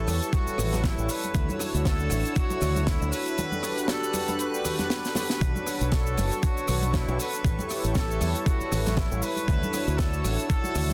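Nu-disco with a groovy, cosmic mood at 118 BPM in 4/4, swung on the sixteenths, this short excerpt rides chords moving from A7 through Dmaj9, Gmaj7 and Bm9, with a drum fill at 5.0 seconds. An overdriven, thumpy electronic kick sits up front alongside a bright fingered electric bass with an envelope filter, while a tight, dry funk kit with a high-tuned snare, hi-hat, rim click and cabasa joins at 0.1 seconds with maracas and congas played by soft hands in the background. Above them, a smooth, detuned analog pad with chorus, delay and sidechain pumping holds the harmony under biting sustained chords from a studio string section, as a distant, roomy trumpet section carries the melody through tape echo in a dense, heavily limited mix with light reverb.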